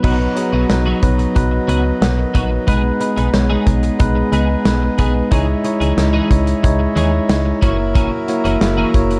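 This moody, urgent 1980s-style pop excerpt opens with the full band at once: a worn, slightly out-of-tune tine electric piano up front in the accompaniment, a reedy, breathing pedal harmonium holding sustained chords, and a bright, twangy twelve-string electric guitar riff treated with ensemble chorus and delay. Underneath, a snappy FM bass with a metallic attack pairs with a smooth, dark-toned studio drum kit featuring a tight kick, medium-tuned snare, hi-hat and crash cymbal. The chords move from B through G#m/B and C#madd9 to F#7, with light reverb and small room ambience giving the production a dark, warm glow.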